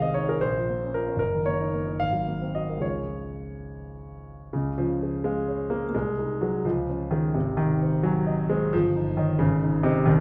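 Passionate and hopeful, this short passage from a longer romantic character piece for solo piano moves in a flexible, rubato 6/8 at roughly 67-89 BPM in D-flat major. A warm concert grand with deep bass sits up front and spans Gb1 to Ab5. It moves through Bbm, Ebm7/Gb and Ab9 to settle on Db before a second section begins at 4.5 seconds and leans on Ab7/C, Eb7/G and Ab, all bathed in a wet recital-hall reverb.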